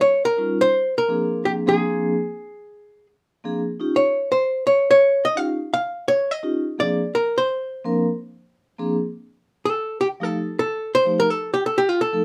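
An amplified hollow-body archtop guitar carries the melody from the very start, its clean, picked tone dark and compressed, sitting up front between F4 and F5. This is a sophisticated, relaxed jazz passage at 168 BPM in 4/4, with a swung eighth-note feel. At 0.4 seconds a vibraphone played with soft mallets enters in accompaniment, ranging from F3 to Bb4 and sounding mellow and airy with a metallic ring and a slow motor vibrato, though it sits lower in the mix than the guitar. The harmony moves through rich ninth chords, Eb9 and Bb9 alternating before settling on F9 at 9.6 seconds. Close, detailed miking and a light touch of reverb keep both instruments intimate across this 12.2-second fragment of a longer piece.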